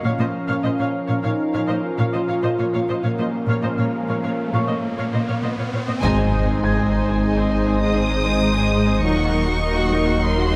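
A brassy, detuned analog pad with chorus holds sustained chords over a rich, close cello section in this brooding, futuristic hybrid orchestral and electronic film cue at 100 BPM in 5/4 and Bb minor, joined from the start by a lush viola section, mellow French horns and a very quiet felt-muted upright piano, all in a moderate scoring-stage reverb. An electronic riser builds in the background from 2.8 seconds until an impact at 6.0 seconds, where a distant violin section enters with a soft-attack, vibrato melody over a second violin line, clear trombones, a very quiet double bass section and a deep, punchy sine sub bass. The harmony moves from Bb minor to Ab and then Eb minor in this fragment of a longer piece.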